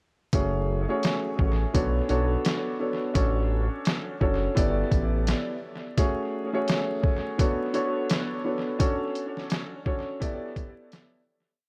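Dark and tough, this short boom-bap hip-hop piece moves at 85 BPM in F# minor with a 16th-note swing, built on a mellow, vintage-toned concert grand piano playing chopped chords repeated like a sampled loop through cassette tape, filtering and tape echo, moving from F#madd9 through Bm7, Dmaj7 and G6. A pitched-down, muffled trip hop drum kit with a thumpy kick, medium-tuned snare and quarter-note hats lays down a sparse, overdriven beat with tape echo, while a smooth, gliding sawtooth synth bass with portamento carries a deep looped line until 5.3 s. From 6.0 s the track breaks down to piano and drums and fades out from 8.8 s, all in an echo-heavy mix with light reverb and vinyl crackle.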